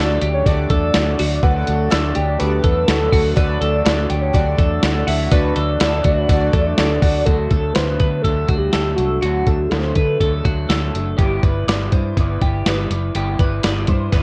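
A muffled, thumpy lo-fi sampler-style drum kit sits up front in this nostalgic, breezy jangly indie pop cut at 123 BPM, beside a dark, round, foam-muted fingered bass, a clean, compressed twelve-string electric guitar picking phased, slapback-echoed arpeggios, a dark, slightly broken-up electric guitar through a small old amp, and bright, glossy chorused retro synth keys in the background that drop out at 7.3 s as the D major opening turns D mixolydian, while a soft, round, octave-layered synth lead with vibrato, chorus, phaser and slapback echo carries the melody until 10.7 s, all under light reverb and a worn, warbling cassette-tape pitch drift.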